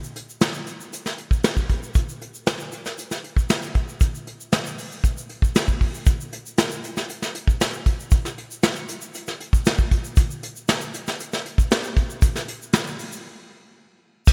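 An egg shaker, grainy and set in the background, opens this glossy, urban pop excerpt at 117 BPM in a straight 4/4, joined at 0.2 seconds by an up-front vintage brush drum kit with dark cymbals, a medium-tuned snare, a tight kick and a rolled-off top, all in light reverb and small-room ambience under a bright 1980s-style digital production, before a break arrives at 13.2 seconds.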